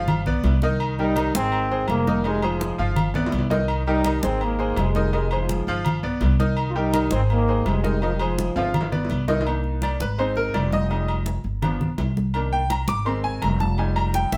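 Captured live in one room with a moderate studio reverb, this danceable, passionate salsa passage sets a clear trombone section on the melody until 8.9 seconds over a bright, worn concert grand piano with audible action noise, a woody, dark pizzicato upright bass, close, dry congas played with hard hands, and ringing, vintage agogo bells and timbales, with drum fills breaking in before the piano takes a solo from 9.5 seconds.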